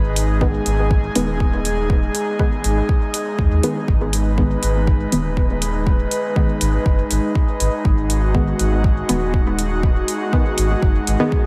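Nocturnal and deep, this dub techno excerpt moves at 121 BPM in G# minor, resting on a single G# minor chord through a dreamy, reverb-soaked hall. An airy, breathy pad sits up front with sustained chords, chorus and vintage 12-bit sampler grit, while a muted, detuned dub chord stab plays through chorus, phaser and dub echo under a filter sweep that runs the full 11.5 seconds. A round, soft sub bass and the pad and stab all pump to the sidechain, an up-front, tape-warm kick enters at 0.4 seconds, and metallic electronic hi-hats tick above.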